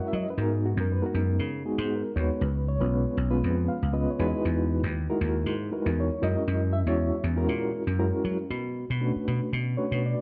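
Intense and driving, this short jazz cut from a longer piece swings lightly in 4/4. A mellow, reedy electric piano carries the accompaniment up front, its clean tone shimmering with a fast tremolo and sounding through its built-in speakers. Beneath it, a vintage slap bass sits just as close, amped, growly and punchy, holding down the low end across the full 10 seconds. The electric piano slips in a brief fill around 3.4 seconds, and the harmony moves through rich extended chords from G#m9 toward a darker Bm9 at 8.5 seconds, where the opening section begins again. A wet recital-hall reverb with a long tail surrounds the pair, giving the groove a spacious, concert-room glow.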